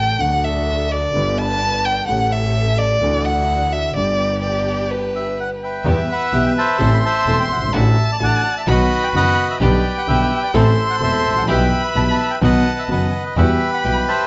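A dramatic, tense tango excerpt opens with a solo violin, bowed close and up front with vibrato, portamento and a soft attack, carrying the second line over a polished concert grand piano whose deep bass and short sustain supply the accompaniment. Beneath them a single bowed double bass sounds earthy and distant with light vibrato, while a studio string section adds smooth-topped stabs from the background. The pulse sits at 128 BPM in 4/4 yet moves with a rubato feel, starting in G major over chords such as G, A7 and Dadd9. At 5.2 seconds a reedy, mid-forward bandoneon steps up front to take the melody, a brief break follows at 5.4 seconds, and the music turns to E minor at 5.9 seconds, passing through Am, B and Em/B before settling on Emadd9. A moderate large-studio reverb surrounds the ensemble, and the top end is gently rolled off.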